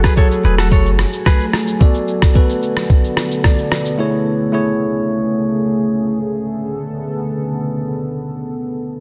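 A muffled, pitched-down lo-fi drum kit, with a thumpy kick, rim click and shaker, sits up front in this hypnotic, mellow afrobeats excerpt at 110 BPM in B dorian, its snare softly clipped, and plays until 4.0 seconds. A boomy 808-style bass and a twangy, direct-recorded clean electric guitar riff with delay open the passage briefly. Meanwhile a bell-like tine electric piano carries the chords from F#madd9 through Bm7 and Amaj7, adding a fill at 3.2 seconds before stopping at 6.2 seconds, while a dark, moody sawtooth pad with chorus and a slow attack sustains in a lush hall reverb on a dense, heavily limited master.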